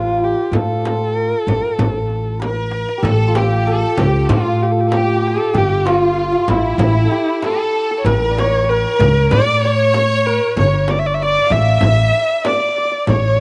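A straight, even 4/4 pulse carries this stately, festive Persian modal ensemble piece, cut from a longer performance. A dark, expressive kamancheh leads the melody up front, one bowed voice rich in vibrato and portamento, while a bright, shimmering santur rings out a second line with a slapback echo. Beneath them an upright bass plays woody, thumpy pizzicato on steel strings, and from 0.5 s a small frame drum struck with hard hands, compressed and saturated, sounds out, joined at 0.6 s by a very quiet, deep tombak that sits close and dry. A lush, focused studio violin section enters at 2.4 s, bowed with vibrato and set distant behind the lead, as a drum fill leads into the next section at 3.0 s. The recording was made outdoors and is dry, with little reverb and a top end that stops at 10.9 kHz.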